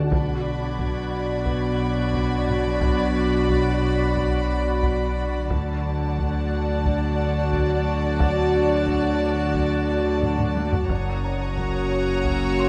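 A taiko ensemble struck with hard sticks sits in the background of this tense, ominous suspense film cue, with a fill arriving at 10.2 seconds. Bowed string sections played sul tasto carry the harmony: a clear, floating violin line holds the melody over a rich, intimate second violin part and a pure, soft-attacked viola accompaniment. Below them, a woody double bass section with vibrato and a smooth-topped cello section anchor the low end, doubled by a deep, punchy sine sub bass drone with a pitch-drop attack. A dark, tight French horn section and a glassy, ethereal FM pad with ensemble chorus and long release sustain chords. The harmony moves through Bm and D before landing on F# at 10.9 seconds, where a high, warm, floating violin texture that dropped out at 5.1 seconds returns. A very quiet felt-muted upright piano adds a mellow texture with audible action noise, all captured with close, detailed microphones and light reverb in this section cut from a longer piece.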